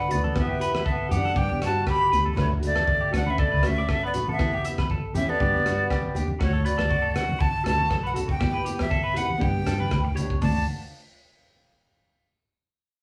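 A lightly swung 119 BPM groove in 4/4 drives this carefree, danceable highlife guitar band in D major, with a crunchy, saturated breakbeat kit of tight kick, hi-hat and rim click up front, low-tuned congas with soft hands in the background, and a round, foam-muted fingered bass as the chords move through Em, G and D. A breathy jazz flute with chiff and vibrato carries the melody throughout, while a mellow alto saxophone adds a second line until about 6.2 seconds. Bright, compressed electric guitar arpeggios with phaser and a fingerpicked nylon-string guitar with finger squeak fill out this short excerpt, all set in a small, wet room.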